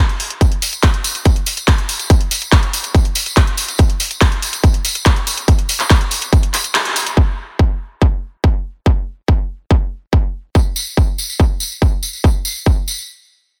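An overdriven techno drum kit of handclaps and hi-hat opens this intense, driving trance excerpt at 142 BPM in straight 4/4, soon joined by a distorted, layered electronic kick up front and a jingly, saturated acoustic tambourine. The kick drops out briefly with a band accent at 6.7 seconds, after which the kit falls away while the kick presses on, with the tambourine returning at 10.6 seconds. Light reverb sits within a dense, heavily limited modern master, and the music comes to a stop at 13.1 seconds.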